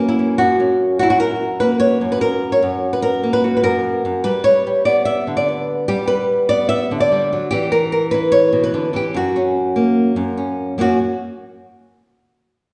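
Set in a straight 4/4 at 147 BPM, this flamenco excerpt unfolds in F# Phrygian dominant with a mournful, passionate mood. A single fingerpicked flamenco guitar carries the whole performance as a solo, its acoustic tone warm and placed up front, ranging from F#2 up to E5. The harmony moves from F# to G, then to E5, before settling back on F# at 9.1 seconds. The guitar plays until 11.0 seconds, and a brief new section arrives near the close, marking this as a fragment cut from a longer piece. A wet recital hall reverb surrounds the instrument, lending it the resonant air of a church or concert hall.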